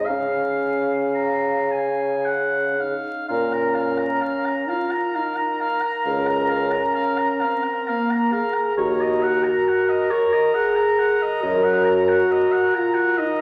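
A slow, lyrical movement for wind quintet, cut from a longer piece, comes through a wet recital hall reverb with a layer of vinyl crackle over the sound. The tempo moves freely with rubato in 3/4 at roughly 53-69 BPM, opening in Db major before turning toward Bb minor at 3.3 s. The concert flute carries the melody with a pure, straight, tongued tone, while the oboe sits up front with a second line, distant and roomy yet warm. Beneath them, the French horn adds a dark accompaniment touched with light vibrato, and the clarinet stays in the background with a warm, classical-style accompaniment. The mellow bassoon anchors the bass with light vibrato until it stops at 12.2 s, and the remaining voices carry on to the end at 13.4 s, giving the passage a warm, lyrical mood.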